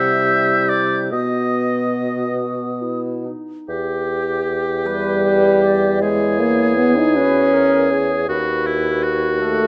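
Classical music for wind quintet, this slow romantic movement in 6/8 moves at roughly 45-55 BPM in dotted quarters, its rubato pulse giving the melancholic, solemn mood room to breathe. The silver concert flute carries the melody from G4 up to G6 with an airy, metallic tone, vibrato, tongued notes and lifted highs. Beneath it the clear oboe sings a second line with light vibrato, while the dark clarinet sits in the background as accompaniment. The mellow French horn, soft in attack yet roomy and placed up front in the blend, shares the accompaniment, and the dark bassoon anchors the bass with its own vibrato. All five play together throughout, and the harmony shifts from C to B before turning toward E minor at 3.7 seconds, passing through E69 and settling on B/D# by 8.3 seconds. Close, detailed microphones and light reverb give this short excerpt an intimate, finely drawn sound.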